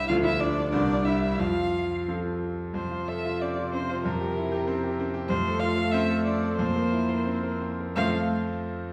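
In a lively, graceful 2/4 pulse at 84-96 BPM with a flexible, rubato feel, this quick classical-period piano trio movement in F major, cut from a longer piece, sets a veiled, con sordino violin melody with light vibrato and portamento over a dark, muted cello second line, while a bright, brilliant concert grand piano with deep bass and long sustain accompanies up front until 8.9 seconds, all heard from further back in a wet recital hall whose reverb lingers around the chords moving from Dm through C7 to F.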